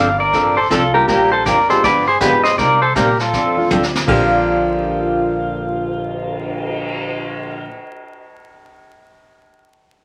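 An up-front, clean pedal steel guitar carries the melody with fingerpicked slides and volume swells in this cheerful, swinging western swing country excerpt at 160 BPM in Bb major, over a bright picked steel-string acoustic guitar with finger squeak, a woody, thumpy pizzicato upright bass, a vintage brush drum kit with a high-tuned snare and tight kick that enters at 0.3 s and fills from 3.7 s, and a worn, slightly detuned upright piano sitting in the background from 0.9 s, set in a small wet room beneath a layer of vinyl crackle.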